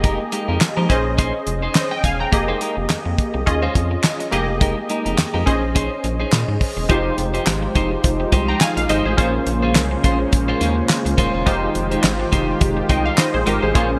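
A punchy, detuned polysynth comp with chorus sits up front from the start, alongside a bright, clean picked electric guitar riff, a rubbery, hollow square-wave bass and a damped 70s kit with a fat snare, tight kick, hi-hat and handclaps, setting a danceable early-eighties boogie funk groove in F minor at 105 BPM with a swung sixteenth feel. At 6.9 seconds a smooth, mellow analog pad with chorus enters in the background, as the harmony moves from Fm11, Bbm11 and Eb9sus4 changes to slower Fm9 and Bbm9 chords. The sound is bright and 1980s-style digital, with moderate plate reverb and some lossy compression artefacts, and this piece is cut from a longer work.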